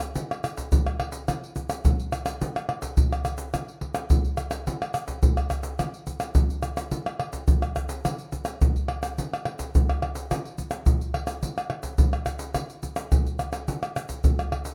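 An up-front, acoustic percussion group of egg shaker, pandeiro, tamborim and a tight surdo, played with soft hands in a small room with light reverb, carries a bittersweet, nostalgic samba at 107 BPM in straight 4/4, shifting into a new section at 5.8 seconds in this passage cut from a longer piece.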